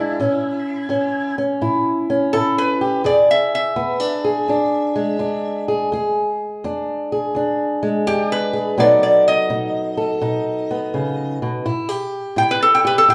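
A swung 84 BPM pulse in 4/4 drives this swaggering, rollicking slice of acoustic country blues, cut from a longer piece and tuned slightly sharp of standard pitch. Up front, a lap resonator guitar played with fingerpicks and a steel bar carries the melody as a slide solo throughout the 13.1 seconds, its tone bright, metallic and nasal, while a fingerpicked old ladder-braced acoustic guitar with old strings supplies a dark, woody, boxy accompaniment. The chords move from A to E7, B7 and A7(no3), and the two players sound live together in one room, wrapped in a large, wet studio reverb.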